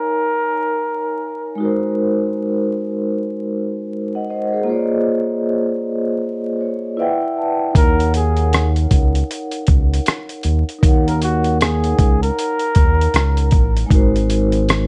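Vinyl crackle and a light reverb frame this melancholic, nostalgic lo-fi hip hop excerpt, which moves at 78 BPM in 4/4 with a swung sixteenth-note feel in Eb dorian. A mellow vibraphone played with soft mallets carries the accompaniment throughout, its metallic, ringing tone softened by cassette tape character and a low-pass filter, with a slow motor vibrato that gives it an airy quality. A breathy flugelhorn offers a brief opening phrase before returning with the melody at 7.8 seconds, intimate and whispered in a jazz style, with light vibrato, soft attacks and scooped notes. A vibraphone fill from 6.2 seconds leads into that moment, when a dusty soul sampler-style drum kit arrives up front with hi-hat, a thumpy kick and rim click, compressed and gritty with vintage 12-bit sampler texture. A smooth, gliding synth bass enters alongside it, dark and sustained with sawtooth and square-wave tones and portamento between notes. 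The harmony drifts through chords such as Ab9, Bbm11 and Ebm7.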